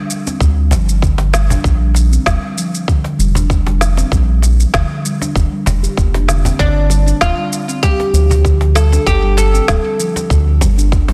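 A lightly swung sixteenth-note groove in four drives this organic downtempo excerpt. It is built from a tight electronic kick that sits up front with a large-room sheen, an overdriven electronic shaker and woody snare bathed in studio reverb, and a close, snappy cajon struck with hard hands. A steel tongue drum opens alone at 0.0 seconds, its pure, ringing arpeggios played with rubber mallets and trailed by delay, lending an airy, meditative quality. Within a fraction of a second the percussion and a round analog bass arrive; the bass is deep, nasal and dark, pumping under sidechain and sitting prominently in the mix. The harmony moves between G5 and Bb6 chords, and at 6.6 seconds a warm, plectrum-plucked fretless oud with double strings adds a short delayed melody that ends at 10.6 seconds. The mood is earthy and mystical, heard in a small room with a dense, heavily limited modern master and a faint mains hum.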